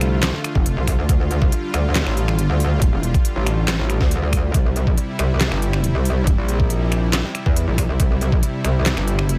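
Heavy and chaotic, this heavy wobble dubstep excerpt in D minor moves at 139 BPM in a half-time 4/4 feel, built on a metallic, aggressive FM wobble bass with chorus and overdrive, a lush detuned supersaw pad holding Dm and C chords under sidechain pumping, a dubstep drum kit of finger snaps, handclaps, crisp hats and a deep snare in small room ambience, and an overdriven knocking electronic kick that plays from 0.6 to 8.4 seconds, with the bass, drum kit and kick set up front in a dry mix.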